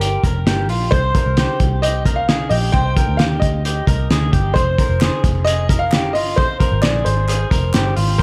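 A straight 4/4 groove from a cloth-damped drum kit sits up front, its fat snare, tight kick and hi-hat muffled and gritty with a rolled-off top. This short cut of jangly indie pop feels wistful and bittersweet, with the harmony settling on Cm at 0.9 seconds and moving to Fm at 4.6 seconds. A foam-muted picked electric bass gives a dark, round low end, while a bright, twangy electric guitar through a small old amp plays slightly broken-up, lo-fi arpeggios. An intimate upright piano carries the melody with a woody tone and audible action noise, and both piano and guitar are soaked in tape echo. A distant, crisp group handclap slips in very quietly at 5.0 seconds, and the echo-heavy mix sits in a small room with light reverb.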